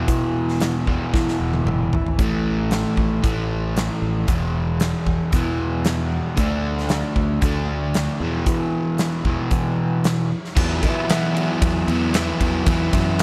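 A crunchy, overdriven electric guitar leads this sunny, confident classic rock excerpt, its picked, double-tracked riff sitting up front and moving through power chords on E, A and D before settling on an Esus2 near the end. A growly, round fingered electric bass plays beneath it from the very start, direct and punchy. A huge arena drum kit enters at 0.1 seconds with a fat snare, a punchy kick and bright cymbals across crash, hi-hat and ride, plus toms, and it has a pumping, hall-like room sound. A drum fill arrives at 1.1 seconds, and at 10.6 seconds the piece moves into a new section. Little reverb is used overall, so the straight 4/4 groove feels close and immediate.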